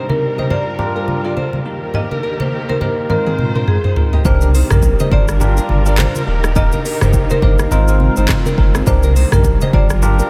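Romantic and breezy, this swung afrobeats excerpt at 104 BPM in Eb major opens with an expressive bowed string section holding sustained chords with vibrato and portamento, a fingerpicked nylon-string guitar riff with finger squeak and analog delay, a woody hard-mallet marimba melody with delay sitting in the background, a bright, bell-like tine electric piano accompaniment with lush chorus, and low-tuned congas, before a produced afro-pop drum kit with deep kick, crisp hats, handclaps, rim click, shaker and toms enters with a fill at 3.1 seconds and a round sine sub bass arrives up front at 4.2 seconds over a Cm7, Gm7, Eb, Ab6 progression.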